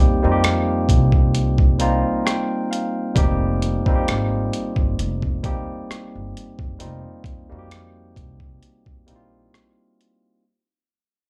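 A gritty, compressed boom bap drum kit sits up front with a thumpy kick, hi-hat and rim click, setting a soulful, sultry neo-soul R&B groove with swung sixteenths. A barky, lightly overdriven tine electric piano, heard through a combo amp with plate reverb and slapback echo, plays over an F9sus4 chord and adds a fill from 1.3 to 3.2 seconds, while a dark, woody pizzicato upright bass anchors the low end. This fragment, cut from a longer piece, fades out throughout and has the feel of a live club gig heard through the venue's PA.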